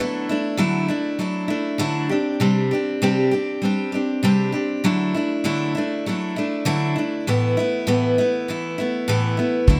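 A steady, straight 4/4 pulse at 99 BPM carries this folk rock and heartland rock excerpt in D mixolydian, with a nostalgic, hopeful mood. A picked steel-string acoustic guitar sits up front from 0.0 seconds, its warm, auditorium-sized tone moving through Dadd9, Csus2, back to Dadd9 and then Asus2. At 9.7 seconds a cloth-damped drum kit arrives with hi-hat and kick, sounding thuddy, dry and dark with a tight kick and a rolled-off top. A fingered electric bass enters at the same moment on a low D, amped and punchy but tucked into the background. Light reverb and a small room ambience frame the sound, and the clip cuts off just as the fuller band comes in.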